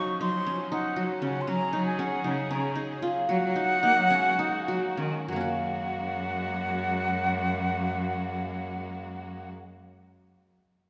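Set in a restless 7/8 with eighth notes pulsing between 197 and 237 BPM, this piece of contemporary instrumental chamber music slows down from 1.5 to 5.3 seconds before a new section opens at 5.3 seconds. The mood is hopeful yet unsettled, in Gb major, with harmony moving from Ebm7 to Gbsus2 and then Gbadd9. Up front, a breathy concert flute carries the melody high in its range, its crisp attack, expressive vibrato and rolled-off highs giving the line a soft glow. Beside it, a bright-edged qanun plucked with a plectrum spins arpeggios through its triple strings, while a single bowed cello supplies the bass with an intense, smooth-topped tone and vibrato. Further back, a distant studio string section holds lush, biting sustained chords. A wet concert hall reverb with a 2.4-second decay surrounds the ensemble in this fragment cut from a longer work.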